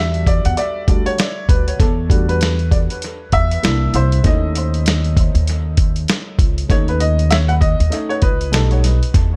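Jazz-hop with a mellow, cool swing: a warm upright piano with dub echo solos over Em11, C9, B9 and Baug7 chords, backed by an up-front pizzicato upright bass with a woody tone and a gritty, compressed, sampler-style soul drum kit with a thumpy kick, medium-tuned snare and hi-hat, all in an echo-heavy studio space in this brief cut from a longer piece.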